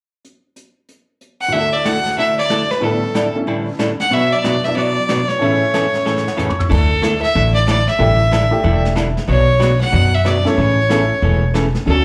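Playful and down-home, this country and western swing passage, cut from a longer piece, opens with a vintage brush kit at 0.2 seconds, its dark cymbals, medium-tuned snare and punchy kick softened by a rolled-off top. A clear fiddle takes the melody from 1.4 seconds, bowed by one player with light vibrato and an earthy, biting edge that sits up front. Almost at once a clean, hollow-body archtop guitar, miked and amplified, and a detuned, jangly honky-tonk upright piano with short sustain and slapback echo fill in the accompaniment over a steady cycle of suspended and added-note chords. A drum fill leads into a thumpy, woody upright bass, plucked on steel strings, which enters at 6.7 seconds and sits prominently beneath the band. The whole set sounds like a live gig heard through the venue's PA, wrapped in light club reverb.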